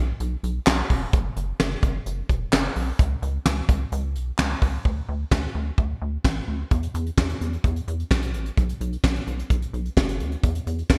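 Synth-pop at 129 BPM in 4/4, melancholic yet driving, built on a rubbery, hollow square-wave bass sitting low and up front with a resonant filter pluck and moving notch, joined at 0.2 seconds by a soft brush drum kit with a fat snare, punchy kick, hi-hat and handclaps under gated reverb. The drums sound dark and smooth in a studio room, while the overall production is bright and 1980s-style digital with light reverb. This cut from a longer piece shifts into a new section at 4.9 seconds.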